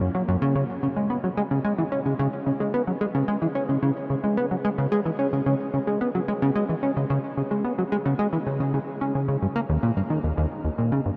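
Drenched in a huge reverb with an 8.2-second tail, this ambient piece sounds as if it were captured in a vast, echoing space. A single plucky analog bass plays alone from 0.0 to 11.1 seconds at 110 BPM in 4/4, its punchy sawtooth and square-wave tone shaped by a fast-attack filter pluck that decays. Up front in the mix, it spans D#2 to C#4 through lush chorus and delay, giving this cut from a longer work an expansive, cosmic mood.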